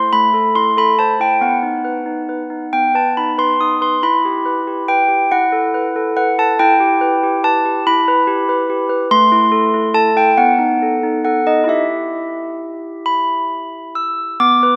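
Wistful and fragile, this slow classical lullaby in 6/8 and E minor, at about 43-48 BPM, is a short excerpt played by solo handbells whose clear, ringing, up-front tones span A3 to E6 through a lush hall reverb in a rough home-demo mix, drifting from Am through B and Em to a closing B7 and Em near 11.7 seconds.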